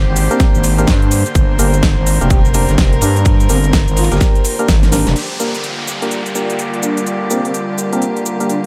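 This bass house excerpt is aggressive and bouncy, moving at 126 BPM in 4/4 with a swung sixteenth-note feel in G phrygian over a G minor chord. A growling, thick FM bass sits up front with overdrive and sidechain pumping, and it plays alongside a punchy, tape-warm electronic kick and a layered big-room dance kit with a huge snare, crisp hats, crash and shaker. Beneath them, a very quiet, dry acoustic reggae kit adds a high-tuned snare and a dark ride with a rolled-off top. Sustained chords come from a close chamber string section with a reedy gut-string tone and light vibrato, blended with an airy, detuned pad with chorus and a slow attack. A soft, flute-like synth lead with vibrato, chorus and delay carries the melody in the background, while a hollow, dark organ stab with a fast attack and decay punctuates the groove. During a drum fill that includes a band accent at 5.0 seconds, the bass drops out at 5.1 seconds, and an electronic downlifter enters at 5.2 seconds, all set in a light reverb.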